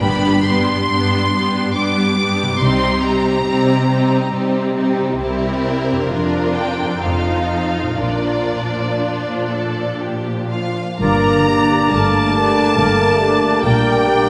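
Lyrical and tender, this rubato classical passage in three sets a smooth, lush violin melody over a focused second violin line, expressive, distant violas, close, soft-attacked cellos and woody double basses, while a ringing, fingerpicked harp plays arpeggios in the background. Dark, roomy French horns enter with sustained chords at 10.5 seconds, and at 11.0 seconds the harmony shifts as a bright oboe, a pure, hollow flute and a warm clarinet add second lines and a mellow bassoon joins the accompaniment. A wet concert hall reverb gives the orchestra a spacious sound in this passage cut from a longer piece.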